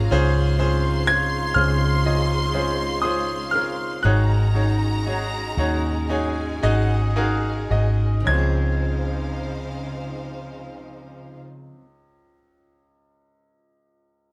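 A round, punchy muted electric bass sits up front in this tender, heartfelt pop ballad excerpt in Db major at 54-62 BPM, which eases down over its first 8.3 seconds through Dbmaj7 and Ab7sus4. Alongside it, a polished baby grand piano accompanies, a concert grand carries a high, short-sustained melody from 1.1 seconds, and a full-bodied picked dreadnought guitar arpeggiates in the background. A distant string section holds soft-attack chords with portamento, and a dark, woody violin section adds a second line, with light reverb in one live room until the baby grand finishes alone at 14.3 seconds.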